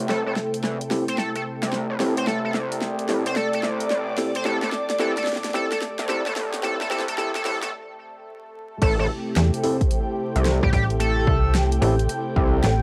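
Swung 16ths at 110 BPM drive this gritty, playful glitch hop excerpt in A minor pentatonic over an Am7 chord: a mellow analog pad and an airy, breathy pad pump under cassette haze and vinyl crackle, while a nasal, saturated synth bass, a tearing sync lead with tape echo, barky overdriven tine electric piano stabs and a pop drum kit with a fat snare and bright hats build through filter sweeps and a drum fill to a break at 7.7 s, then drop at 8.8 s as a punchy electronic kick arrives, followed at 9.4 s by a snappy, metallic slap-like FM bass.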